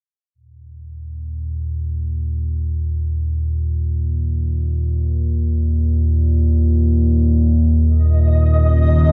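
This short excerpt from a longer dark ambient piece opens on a deep, rumbling drone that sits up front from 0.9 seconds, its wave-folded, warbling tone carrying a vintage character and a slow attack. Unfolding in free time, it establishes an ominous, unsettling mood as it sustains through to the end. Near the close, a flickering, grainy texture appears high above at 8.1 seconds, its detuned granular shimmer softened by built-in reverb. Moments later, at 8.4 seconds, a moody, full-bodied analog pad enters in the background with sustained chords, its detuned sawtooth sound thickened by chorus and a sub octave. The whole is bathed in a cavernous cathedral reverb within a dark, warm production.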